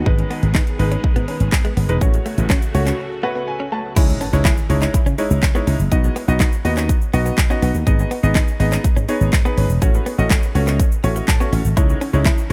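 Dance-pop with an energetic, bittersweet mood, driven by a punchy, up-front electronic drum kit with handclaps and shaker and a growly, envelope-filtered slap bass, while a clear grand piano with dub echo and sidechain pumping plays accompaniment and fills, a scooped, clean electric guitar riff shimmers with lush chorus in the background, and vintage sawtooth string-machine cellos under phaser hold sustained chords through a break at 3.0 seconds until 3.9 seconds, after which a very quiet electronic impact marks the new section at 4.0 seconds and the cellos return at 11.8 seconds in a dry, echo-heavy mix.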